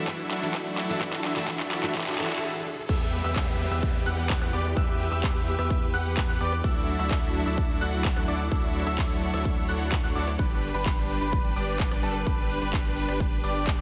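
Uplifting and anthemic, this excerpt of festival progressive house moves at 128 BPM in D major, opening with a build-up where a bright, jumbo-bodied picked acoustic guitar, smooth background strings, huge detuned supersaw chords with vintage 12-bit sampler grit, and a thick saturated sub bass all pump under sidechain while a background riser and downlifter and a drum fill push forward until a brief stop at 2.4 seconds. The drop lands at 2.9 seconds, where a punchy, up-front electronic kick and a crisp, tape-flavoured big-room kit with handclaps, hi-hat, rim click, shaker and crash drive the groove, and a dark, mellow grand piano adds delayed arpeggios in the background over chords moving from Em to Dadd9 to G. The whole mix is dreamy and soaked in a lush hall reverb.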